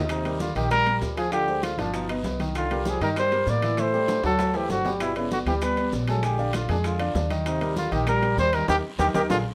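A straight 4/4 groove at 196 BPM drives this sophisticated, danceable Afro-Cuban jazz excerpt in Eb major, with bright, damped congas, round low-tuned bongos, ringing metal-shell timbales, a raspy distant guiro and grainy, saturated maracas layered beneath a woody, thumpy pizzicato upright bass up front. A breathy trumpet with light vibrato and scooped notes carries the melody, joined by a dark trombone second line, while a mellow grand piano with short sustain comps through rich chords such as Ebmaj13, Gaug7 and Cm11. Drum fills land at 4.1 and 9.1 seconds, and a full-band accent arrives at 8.7 seconds in a moderate studio ambience.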